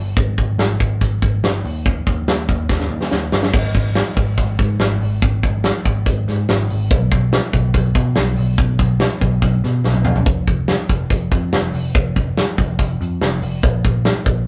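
A rough rehearsal-room sound with light reverb frames this youthful, nostalgic slice of jangly indie pop in a straight 4/4, where a dark, round, foam-muted vintage picked electric bass holds down the low end from the start and a big acoustic rock kit, up front with bright cymbals, a punchy kick, a medium-tuned snare, hi-hat and toms, joins at 0.2 seconds and marks the move into the next section with a fill at 2.7 seconds before another at 9.8 seconds.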